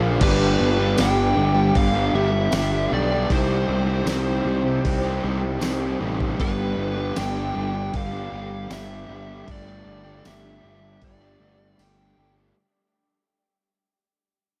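A growly, fuzz-soaked electric bass sits up front in this wistful, hazy shoegaze and dream pop excerpt at 78 BPM in G major, paired with a clean 12-bit drum machine whose thumpy kick and fat snare also sit forward, and a jingly tambourine tucked behind from 1.0 seconds. A warm overdriven guitar riff with reverse reverb, a dark semi-hollow guitar with subtle chorus in the background, and a very quiet, double-tracked distorted guitar play alongside the biting lead melody, which trails analog delay. The G, Cm, G, Gsus2 progression fades throughout under light reverb before a brief break at 11.8 seconds.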